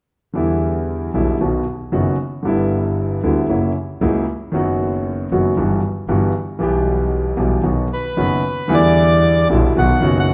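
A reedy, dark bandoneon enters at 7.9 seconds in this short tango passage cut from a longer piece, carrying the melody in a close-miked, dry and full voice. Before it, a clear concert grand piano opens the accompaniment at 0.3 seconds, its smooth, vintage tone sitting up front and reaching down into deep bass. A single bowed double bass joins at 0.4 seconds, earthy and distant, with a light vibrato. The mood is sultry and tense, in E minor at 115 BPM in 4/4 with a rubato feel, and the harmony moves through Em7, B, G6 and F#7 before returning to Em7 and B. A moderate scoring-stage reverb lends the performance a sense of space.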